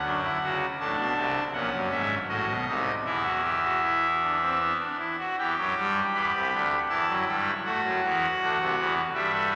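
Classical baroque-style three-part fugue in a lively, joyful 3/4, played by a solo pipe organ on a brassy, bright trumpet stop with romantic voicing, sitting up front in a wet cathedral reverb that lingers long after each chord in this short fragment cut from a longer piece.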